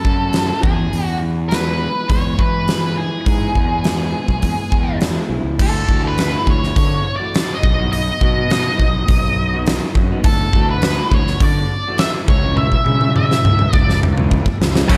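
Quiet-loud alternative rock at 103 BPM in 4/4, cathartic and brooding, this excerpt sets a dark octave-fuzz lead guitar melody with slapback echo over twangy, slightly broken-up arpeggios from an electric guitar through a small old amp with tape echo, a growly overdriven fingered bass, and a huge up-front arena drum kit with bright cymbals, a fat snare and a punchy kick. The chords move from F#m and E into Dadd9, B and C#m, and a drum fill runs from 12.6 to 14.9 seconds. At 14.9 seconds a cranked stack guitar and a compressed fuzz guitar enter with a riff, all inside a lush hall reverb that gives a big arena sound.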